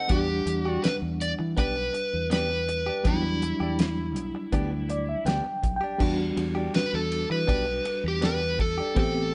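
Dark and smoky with a light reverb, this short cut from a longer mournful soul blues in E minor sits at 81 BPM on a straight 4/4 over an Em7 chord, with an up-front, overdriven slide guitar carrying the melody above a gritty reed electric piano pulsing with medium tremolo through a combo amp, bright compressed stabs from a clean direct-recorded electric guitar, a round fingered electric bass and a cloth-damped, thuddy drum kit with a fat snare and dark cymbals, while the piano adds a fill at 4.5 seconds before the slide guitar takes a solo from 6.0 seconds to the end.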